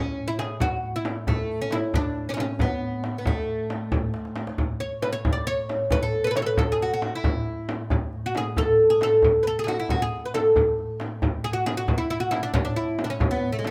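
Persian modal ensemble music in A dastgah mahur, stately and passionate at 90 BPM in a straight 6/8, this fragment of a longer piece puts a woody, fretless, plectrum-plucked oud with double strings up front on the melody, bathed in plate reverb, over a smooth, boxy bowed double-bass drone on A2 with vibrato, while a tight, distant tombak and a small, bright frame drum join at 0.4 seconds and a drum fill at 4.1 seconds leads into a new section at 4.6 seconds, within a moderate small-room ambience.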